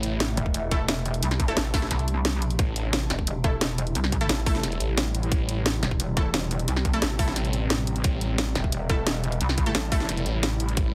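A heavily compressed, radio-like mix with light digital ambience carries this mechanical, dark technical drum and bass excerpt at 176 BPM in A minor, held on an A minor chord throughout. Up front, a snarling, growling distorted saw bass with tube saturation and sidechain pumping sits alongside a pulsing pluck wobble bass with chorus that enters at 0.4 seconds, while a tight electronic kick arriving at 0.5 seconds and a layered kit with a cracking snare and hi-hat drive the straight 4/4 beat. Bold, punchy orchestra-hit-like synth stabs with reverb and delay cut through brightly above a swarming, tense granular drone of sustained chords that pumps in the background.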